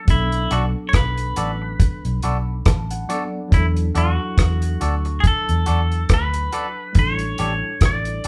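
A twangy, compressed electric guitar carries the melody in this short cut from a longer lovers rock reggae piece, set in B minor at a relaxed 70 BPM with a swung sixteenth-note feel and a longing, smooth mood. Beneath it, a worn, slightly out-of-tune tine electric piano plays accompaniment through its built-in speakers, stepping forward with a fill from 1.8 to 3.5 seconds. A round, foam-muted vintage bass sits up front, alongside a dry, dark reggae drum kit with a tight kick, hi-hat and rim click. A clean semi-hollow guitar with a scooped, hollow-body tone adds stabs over the progression of Bm7, E9sus4 and A7sus4. The band sounds as though it is playing live in one room, wrapped in a moderate studio reverb.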